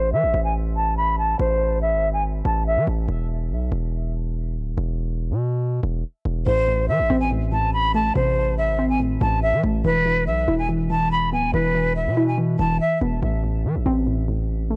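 A dry, gritty cassette-tape sound in a small room frames this menacing, cold drill excerpt at 142 BPM in a half-time feel, where an airy, vibrato-laced jazz flute with low-pass filtering and analog delay carries the melody up front, a saturated, heavy distorted 808-style bass runs throughout, and a nasal, warbling dusty pluck with chorus enters at 6.5 seconds as accompaniment.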